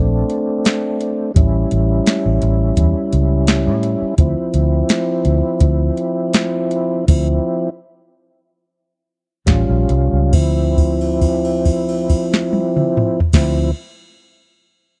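Mournful and soulful, this dry, close 1970s-style soul blues fragment sets a mellow, lightly overdriven tonewheel organ with chorus vibrato and a slow rotary speaker over a dark, foam-muted fingered electric bass and a soft analog rhythm box with a deep kick, crisp snare and metallic hats, slowing from 4.2 s, stopping at 7.1 s, and settling on a held note from 10.3 s.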